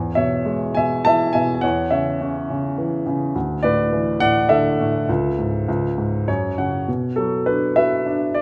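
Classical solo piano in a lyrical, bittersweet and moody vein, moving at 103 BPM in 3/4 with a rubato feel and tuned to A4 = 444 Hz. A baby grand carries the piece alone, its tone warm, polished and up front across a range from C#2 to A5, as the harmony drifts from E through Dsus2 toward F#5. A short fill at 6.0 seconds leads into a new section opening on Bm at 6.9 seconds, and a moderate scoring-stage reverb gives the present sound a sense of space in this brief cut from a longer piece.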